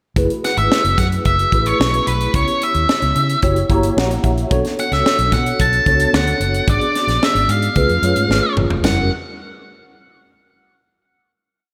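Nocturnal and urban, this polished 1980s jazz-funk pop piece moves at 111 BPM in F# minor, with a dark, up-front octave-fuzz lead guitar playing a motif-based melody over mellow tine electric piano chords with ensemble chorus and a short fill at 3.4 seconds, an agile, syncopated foam-muted fingered bass, and a tight funk drum kit with bright cymbals and a crisp sixteenth-note groove, all bathed in lush hall reverb for a big arena sound before a drum fill leads to the final F#7b9 chord at 8.8 seconds.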